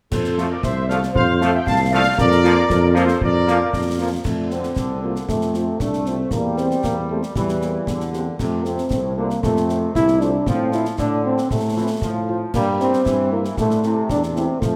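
Set in a roomy, wet studio reverb, this spirited, festive military-style march for wind band in 2/4 carries a dark trumpet section melody over an up-front, mellow tuba bass, clear trombone chords, a very quiet French horn accompaniment and close, dry concert snare, bass drum and dusky clash cymbals, while an airy, hollow flute line drops out at 4.0 seconds and a warm, up-front euphonium takes up the second line from 4.2 seconds.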